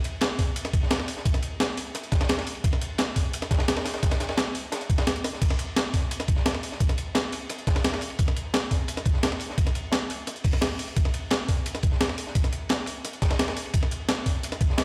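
Two breakbeat drum kits open this drum and bass excerpt together. The first is a gritty, tape-toned sampler-style kit up front, with crash cymbal, hi-hat and a medium-tuned snare. Beneath it sits a second, crunchier kit that sounds acoustic and dark, with a saturated, rolled-off top, a high-tuned snare, a ride and hi-hat, and filtering that thins its cymbals, snare and room. At 0.4 seconds a compressed, thumpy electronic kick joins near the front of the mix and carries through to the end of the excerpt. The straight 4/4 feel comes across as rolling and dreamy. Everything sits in light, small-room reverb, like a big sound system playing in a bare stone room.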